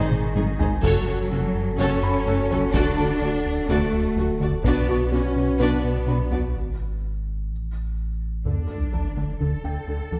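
A straight, driving pulse in four sets this relentless, futuristic cue from a hybrid orchestral and electronic film score, with a taiko ensemble of heavy sticks opening on a drum fill at 0.1 seconds and pounding from the background in a close, dry sound. Underneath, a round, wave-folded analog bass riff and a deep sine sub bass share the low end with dark, smooth-topped cellos and a distant chamber double bass section, while lush violas carry the accompaniment with vibrato and expressive portamento. A rich, focused violin section sings a second line above, and a French horn section holds tight, soft-attacked sustained chords in a classical style. Woven through it all, a juicy, squelchy detuned sawtooth pluck spins arpeggios through phaser and digital delay, and a soft, felt-muted upright piano adds intimate texture with its own delay. The drums, horns and violins fall away around 6.5 seconds for a break, then a huge, dark sub drop lands at 8.5 seconds as an impact. 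The whole ensemble sits back in a reverberant scoring stage, lending it a grand, cinematic depth.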